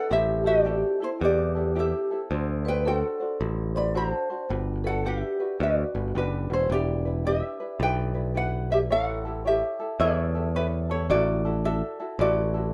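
A bright, fingerpicked ukulele carries the melody up front in this sunny, languid Hawaiian piece, taken from a longer performance and moving at 109 BPM in 4/4 with a lazy swing on the eighth notes. Beneath it, a tenor ukulele adds fingerpicked accompaniment with a warm, light touch. A ringing, metallic vibraphone played with medium mallets traces a second line through a plate reverb and a slow motor vibrato, dropping out at 6.1 seconds. A growly, direct electric bass sits prominently in the mix, anchoring the harmony as it moves from G major through Am7, D7 and Gmaj7 into E minor at 6.7 seconds, where the chords shift to Em7, A7 and Dadd9/A. The sound has a moderate studio ambience and the rough feel of a home demo, with audible lossy compression artefacts.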